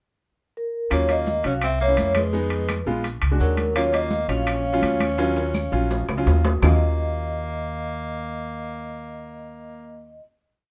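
Light reverb gives this short, complete Afro-Cuban jazz piece a small-room sound, with a woody, thumpy upright bass up front playing a pizzicato tumbao that anticipates the chords. The mood is sultry and driving in a straight four. A mellow, close-miked vibraphone with soft mallets enters at 0.6 s with a motif-based melody of call phrases, ringing with a medium motor vibrato. Beneath it, a raspy, growling tenor saxophone carries a second line, mostly in thirds, while a baby grand piano adds syncopated, short-sustained chord stabs in rootless voicings over a jazz progression of minor-ninth, altered and half-diminished chords. In the background, medium-tuned congas with slaps and open strokes and a two-bar clave time line join grainy vintage maracas and metal-shell timbales with shell pattern and bell to drive the groove, with a drum fill before the percussion drops out at 6.7 s. The remaining quartet holds a final chord until the piece ends at 10.2 s.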